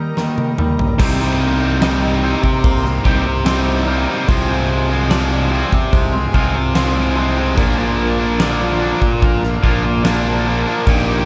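At a slow 73 BPM in straight 4/4, this brooding, cathartic post-rock passage in C minor opens on an Eb chord, with a drum fill from 0.2 seconds on a huge arena kit whose fat snare, punchy kick, toms and bright crash cymbals ring out in a hall. At 1.0 seconds a biting overdriven guitar riff and a fuzz-laden fingered bass with overdrive step up front as the harmony moves through Cm7, Fm/C and Bb. Further back, a compressed distorted guitar plays its own riff, while a twangy, scooped clean guitar and a lo-fi, slightly broken-up guitar through a small old amp pick arpeggios, both treated with analog delay and the latter with tremolo as well. A very quiet bowed string section holds rich, earthy sustained chords with light vibrato beneath the band. The production is dark and warm, set in studio ambience, and the clip is cut from a longer piece.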